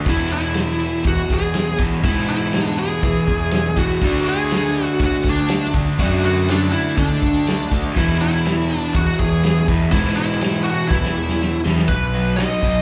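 Heard through a venue's PA with a touch of club reverb, this sunny, driving classic rock clip at 122 BPM in E mixolydian moves from E to D to E before landing on B. An up-front, distorted lead guitar carries a bluesy melody with slapback and tape echo over two overdriven rhythm guitars in the background playing a riff: one bright and compressed with slapback echo, the other a warm, hollow-bodied semi-hollow. A growly fuzz bass and a tight, natural-sounding vintage kit drive the groove, a very quiet, piping tonewheel organ with slow rotary speaker enters with sustained chords at 4.0 s, and a drum fill arrives at 10.9 s.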